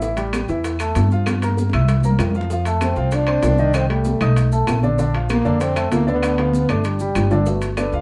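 Afro-Cuban jazz at a brisk 193 BPM in 4/4, this short, sunny, danceable fragment sits in C major and is cut from a longer piece. An up-front pizzicato upright bass with steel strings anchors the low end with a woody tone, while a grand piano with a natural, long sustain supplies the accompaniment. A background percussion bed of high-tuned congas, tight bongos, grainy maracas and claves is joined by vintage timbales whose metal shells ring, with drum fills arriving at 1.3 and 6.2 seconds. At 2.8 seconds a solo French horn enters in a classical style, its mellow, punchy voice carrying vibrato. The harmony moves restlessly through chords such as Gm7, C7, Bbmaj7 and a closing Gmaj9. The band sounds live in one room, with moderate studio reverb giving the ensemble a modest sense of space.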